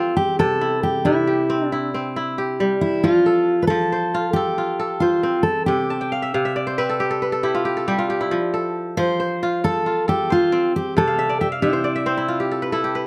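Close, detailed microphones and light reverb frame this flowing West African traditional excerpt in F lydian at 91 BPM in 12/8, where a dark, woody fingerpicked steel-string acoustic guitar on old strings carries the melody up front while a ringing, crisp kora spins arpeggios and adds fills at 5.9 and 11.1 seconds over a shift between C and F chords.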